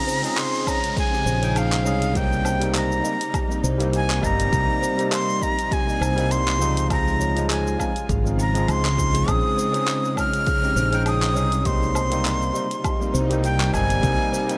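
Sunset chillout in Bb dorian at 101 BPM with a lightly swung sixteenth-note feel, relaxed and wistful, where a breathy, up-front jazz flute carries the melody with vibrato and digital delay over a barky, overdriven tine electric piano roughened by vintage 12-bit sampler grit. A shimmering, detuned ambient pad with chorus sits in the background beside delayed kalimba arpeggios with a woody ring, while a downlifter sweeps through the opening 4.5 seconds. A produced deep house kit of handclaps, hi-hat, shaker and woodblock is soon joined by a punchy electronic kick, and a round, dark fretless bass enters at 1.3 seconds beneath chords moving from Bbm11 through Cm7 and Abmaj7/C to Dbmaj7, all in a light reverb.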